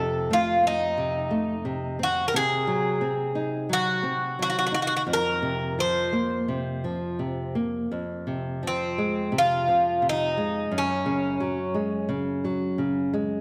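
In a free, rubato 4/4 around 87 BPM, this mournful, longing fado-style ballad, cut from a longer piece and tuned to A4 = 441 Hz, pairs a picked Greek bouzouki melody with a small, fingerpicked nylon-string guitar accompaniment, both acoustic and up front. The bouzouki's metallic double strings, some doubled at the octave, sing over chords moving from F7 through Cdim, Fsus4 and Fm7 to Gbsus2. A wet concert-hall reverb surrounds the pair, and the guitar rings on alone after the bouzouki stops at 12.1 seconds, until 13.4 seconds.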